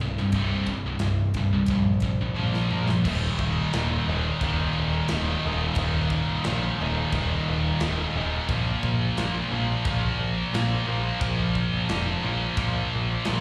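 A scooped, high-gain guitar riff and a growling, overdriven picked bass open this aggressive, epic heavy metal excerpt, cut from a longer piece, with the double-tracked, distorted guitar sitting up front and carrying a slapback echo. A tight, airy acoustic drum kit with bright cymbals, a medium-tuned snare and a tight kick sits in the background, and a drum fill at 2.4 seconds leads into a new section at 3.0 seconds, where the power chords move from Eb5 to Bb5. The sound is that of a live gig heard through the venue's PA, with light reverb lending a touch of recital-hall space.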